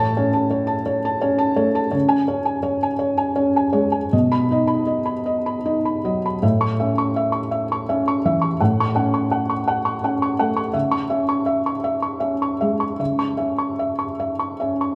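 In a rubato 6/8 lilt at roughly 50-57 BPM, this reflective, intimate fragment of neoclassical minimalist piano in C# minor features a solo felt-muted upright piano, soft, mellow and up front with a vintage character, spanning A2 to C#6 across a chord progression that drifts from A through B and F#m/A to settle on C#m at 10.7 seconds, all bathed in the wet reverb of a recital hall.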